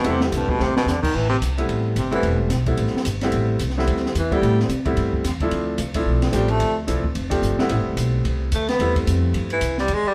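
A late-night, moody small-group swing and bop excerpt opens with a baritone saxophone soloing up front at a brisk 220 BPM in A minor, its warm, smooth-topped tone carrying light vibrato and a plate reverb, while a bright, polished upright piano accompanies alongside over Am7 and Dm7 harmony. Woody pizzicato upright bass on steel strings anchors the low end, and a dark acoustic drum kit with a high-tuned snare and boomy kick adds ride, hi-hat and crash, with a drum fill at 0.6 seconds. The whole group sits in a wet club ambience, heard from further back in the room.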